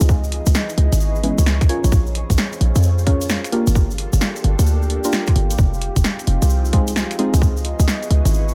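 A soulful, late-night slice of two-step UK garage, this short excerpt swings its sixteenths over a slow drift of minor seventh chords. Up front, a tight, layered electronic kick and a punchy, sine-based 808-style bass with a noise layer carry the weight, the bass pumping against the sidechain. A tape-warm analog drum machine adds finger snaps, hi-hat and a punchy snare from a small room, while a grainy, bright egg shaker sits distant in a larger space. Beneath them, a deep, moody ambient pad of detuned sawtooth and sine with a sub octave breathes through chorus and its own reverb, and a silky vintage string machine hums in the background with phaser and ensemble chorus. From 1.2 seconds to 7.3 seconds, a deep, mellow chord stab with ring modulation and a moving notch flickers through chorus and dub echo, giving the otherwise dry mix its echo-heavy, nocturnal haze.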